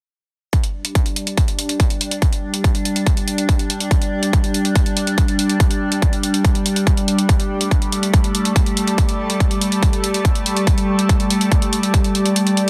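Hypnotic and driving, this psychedelic trance excerpt moves at 142 BPM in a straight 4/4 over a G5 chord. A distorted, overdriven electronic kick drum sits up front and drives the groove until it stops at 12.0 seconds. Tape-warm electronic hi-hats, re-recorded in a small room, sit lower in the mix and run the full length. An evolving wavetable pad, also up front, holds sustained chords from 0.9 seconds. Its slow attack and long release are coloured by chorus, phaser and sidechain pumping. Above it, a soft, breathy pad with a noise layer and ring modulation adds a mellow upper texture, while a fade-in spans the passage and a lush hall reverb sits behind a dense, heavily limited modern master.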